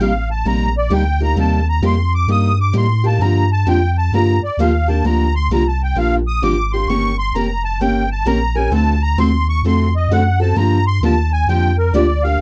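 A swung 4/4 pulse at 131 BPM drives this short excerpt of acoustic string swing in the jazz manouche style, set in G minor with a swinging, fiery mood. A musette accordion carries the melody as a solo throughout its 12.4 seconds, its reedy, shimmering musette tuning sitting high above the band. Beneath it, a picked steel-string acoustic guitar supplies the accompaniment with a boxy, up-front tone, while a pure sine sub bass anchors the low end with a deep, clean, dark sustain. The harmony moves from Cm7 through Gm7 and Eb7 to a tense D7#9 at 8.7 seconds before settling back on Gm7. The dry, close studio sound has a 1970s character, with little reverb around the players.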